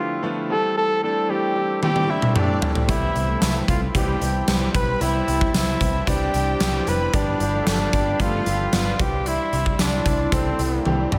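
Lush hall reverb and a big arena sound frame this uplifting, glossy 1980s-style pop excerpt, where an up-front flugelhorn with light vibrato and scooped notes carries the melody over a clear concert grand piano with slapback echo. At 1.8 seconds a huge arena drum kit with a fat snare and punchy kick joins, along with a distant, very quiet violin section. At 2.9 seconds a round, foam-muted picked electric bass and a smooth, warbling analog pad enter, followed at 3.0 seconds by detuned synth brass stabs.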